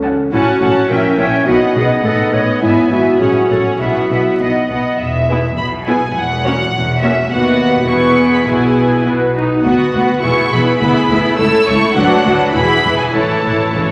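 Moving in a straight 2/4 at 103 BPM, this graceful, spirited classical-period orchestral passage, cut from a longer movement, sets a rich, lightly vibrato violin melody over a dark, woody second violin line, while a present solo clarinet and mellow French horn chords fall away by 4.7 s, floating violas accompany, and pure cellos and smooth-topped double basses hold the bass as the music turns from E major to A major at 9.6 s before calf-headed timpani add a fill at 13.1 s, all set in a wet concert hall under a veil of vinyl crackle.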